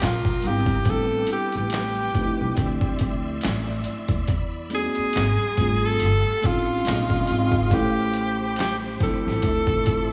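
A close-miked, vibrato-laden tenor saxophone leads this introspective, late-night neo-soul R&B excerpt at 70 BPM in D dorian, over a round, chorused FM electric piano, a reedy tonewheel organ turning on a slow rotary speaker in the background, a woody pizzicato upright bass and a gritty, overdriven boom bap kit with a thumpy kick, snare, hi-hat and handclaps, moving through jazzy chords such as Am11, Dm9 and G9sus4 with a lightly swung sixteenth-note feel.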